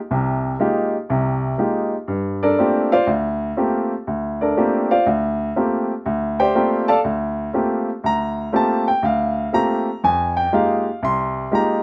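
Dry, open-air sound with a light reverb frames this short jazz excerpt, its spiritual, searching mood carried by a solo baby grand piano that sits up front with a warm, natural tone and a slapback echo. Swinging in 4/4, the piano spans a broad register from C2 to C6, moving from an Fm11 chord into a long stretch on Gm11 at 2.1 seconds before returning to Fm11 at 10.0 seconds.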